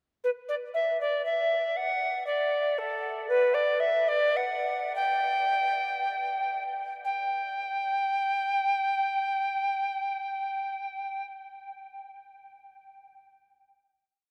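A vast, echoing space surrounds this short classical piece, with a huge, wet reverb that lets each note hang for seconds after it is played. A single alto recorder carries the whole melody alone, a baroque-style fantasia in G major and 3/4, tuned to A4 = 441 Hz, moving between roughly 81 and 119 BPM with a free, rubato feel. Its tone is woody, pure and mellow, with vibrato and a tongued chiff at the start of notes, sitting up front yet touched with distance by the room. From 2.5 seconds the line gradually slows, and at 7.0 seconds it settles onto a long final note that rings until 11.3 seconds. The mood is flowing and radiant, a brief, complete statement that seems to float in its resonant surroundings.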